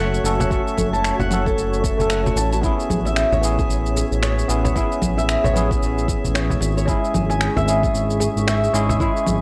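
Swung sixteenths drive this mystical organic downtempo groove, where a deep electronic kick, electronic shaker, congas and finger snaps, and a soft-handed woody cajon in the background frame a smooth, portamento-gliding synth bass with sidechain pumping up front, dark fingerpicked flamenco guitar arpeggios through analog delay, a bell-like tine electric piano with vintage 12-bit sampler grit, and a cloudy granular pad and glassy drifting harmonics texture floating behind, all within a dry, gritty hardware sound touched by transformer saturation.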